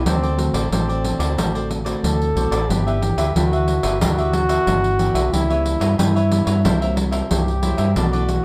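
A punchy, close-miked trombone leads this sunny, joyful samba-choro fragment in D major at 91 BPM, carrying a forceful jazz-style solo melody with scooped notes. It rides over crisp picked cavaquinho, a fingerpicked classical nylon-string guitar set in the background, and a dark, round fingered electric bass placed up front, while a jingly pandeiro joins at 0.1 seconds. The band plays live together in one room with moderate studio reverb, moving through D7, G6, C#m7b5 and C7#11 in a straight 4/4.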